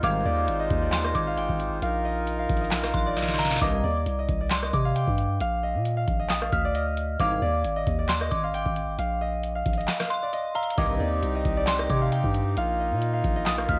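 A booming analog drum machine with a deep kick, crisp snare, claps and metallic hats drives this dark, menacing half-time trap excerpt at 134 BPM. Alongside it come a long, sine-toned 808-style bass, a fingerpicked concert harp melody with a ringing, mellow tone, and an eerie, inharmonic FM synth bell carrying a second line through chorus and tape echo. A reedy accordion holds sustained chords that drop out at 3.6 seconds and return at 10.8, while a juicy, wave-folded polysynth with a resonant filter sweep adds brief stabs over a progression moving between Ab, Bbsus4 and Cm. The drums fill at 3.2 seconds, the kick briefly falls away late on, and the harp, bell, accordion and polysynth carry a cassette-tape hue in a dry home recording.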